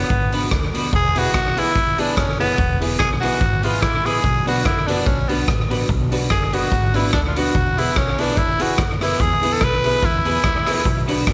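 Ska at 145 BPM with a light swing in E mixolydian, upbeat and joyful, built on Bm and E chords and led by a raspy, edgy tenor saxophone solo with vibrato and slapback echo up front, over a saturated, pumping garage drum kit of hi-hat, punchy kick and rim click that also carries slapback echo, while a woody pizzicato upright bass, a clean, picked semi-hollow electric guitar with subtle chorus, and a clear, slightly detuned upright piano playing stabs from 1.2 s sit in the background of a light studio reverb.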